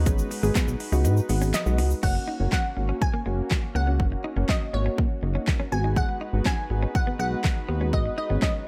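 A straight 4/4 dance-pop groove at 122 BPM drives this confident excerpt. An up-front, overdriven pop drum kit of punchy kick, fat snare, metallic hi-hats, handclaps, shaker and crash leads the way, with the kick dropping out from 1.0 to 2.0 seconds while a grainy tube shaker plays until 2.0 seconds. Beneath it sits a dark, sidechain-pumping chorused synth bass. Above, a crystalline wavetable pluck carries the melody, joined by mellow electric-piano-like synth keys with phaser, a clean direct-recorded electric guitar riff, and a warm analog pad holding sustained chords in the background. The harmony moves from G#m7 to F# and back in a dry, close mix.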